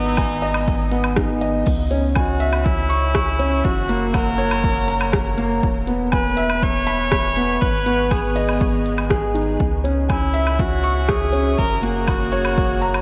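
A reedy, bowed viola carries the melody up front, a single player with light vibrato and a gut-string, period-style tone, its line trailed by analog delay. This piano and strings electronica moves at 121 BPM in a straight 4/4 in C# dorian, tuned to A4 = 436 Hz, with an intimate, cinematic mood. A concert grand piano plays a riff that is boxy yet deep in the low end, with long sustain and its own analog delay, sitting up front with the viola. Beneath them, a round, sine-like sub bass with a fast attack holds sustained warm notes that pump against the sidechain. From 0.2 seconds a punchy, layered electronic kick and an organic electronic drum kit with crisp hats, crash cymbal, rim click and woodblock come in, both overdriven, the kit re-recorded in a large room. A huge ambient reverb with a 7.4-second tail soaks the mix in a dreamy haze as the chords cycle through G#m, C#m, F# and E in this short section cut from a longer piece.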